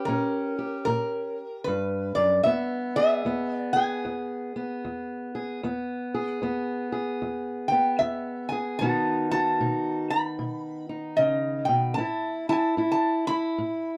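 A lap resonator guitar carries the melody up front, its slide lines sounding metallic and nasal yet mellow, picked with fingerpicks across this 14-second passage cut from a longer piece of acoustic country blues. Beneath it, a parlour-style steel-string acoustic guitar is fingerpicked throughout, dark and boxy in tone, holding down the low accompaniment. The two guitars play together from start to finish in an unhurried 4/4 with a loping swing on the eighth notes, giving the duo a swaggering, soulful mood. The harmony moves from A#m6 to E, then B, settling on A5 at 12.0 seconds. A moderate booth ambience and a dusky, warm production keep the sound close and intimate.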